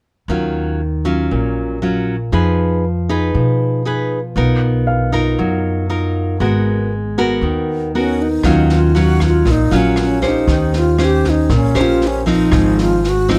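A breathy alto flute with vibrato carries the melody from 8.0 seconds over a fingerpicked, full-bodied nylon-string guitar held up front and a woody, thumpy pizzicato upright bass in this intimate, melancholic bossa nova excerpt at 118 BPM in Eb minor, with a natural-sounding baby grand piano placing a short-sustain E#5 in the background near 4.9 seconds and a dark, smooth jazz drum kit of boomy kick, rim click and snare joining at 8.4 seconds under light reverb.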